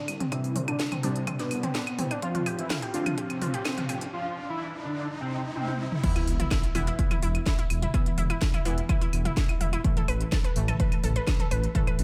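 Melodic techno in E phrygian at 126 BPM, this hypnotic, driving excerpt opens on a build-up where filter sweeps move across the fat, mellow analog lead, the brassy synth stabs and the bright unison pluck arpeggios, all pumping against the sidechain. The lead carries the melody with vibrato, ensemble chorus and analog delay until 5.9 seconds. A background riser climbs toward a break at 4.1 seconds, and a drum fill leads into the drop at 6.0 seconds, marked by an impact and sub drop. From there the deep, rumbling detuned saw bass, the overdriven heavy kick and a drum kit of cracking snare, smooth hats, claves, crash and toms drive on, while the punchy stabs and lush plucks repeat through tape echo. The harmony moves from Csus2 and F5 to E5 and A5, set in light digital ambience.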